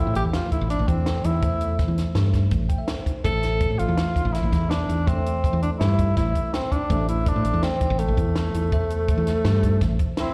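A breathy, whispered tenor saxophone carries the melody up front in this brooding, intricate progressive instrumental excerpt, moving in 5/4 at 165 BPM in A minor over a single Am chord, its mellow scooped notes touched with vibrato and slapback echo. A woody, round fretless bass and a compact cocktail kit with a high-tuned snare and punchy kick sit up front alongside it, while a bell-like tine electric piano with analog chorus stays in the background and adds a fill at 2.5 seconds. The sound is that of a live gig heard through the venue's PA with recital hall reverb, and a flugelhorn slips in on a single note at 10.2 seconds just as the cut ends.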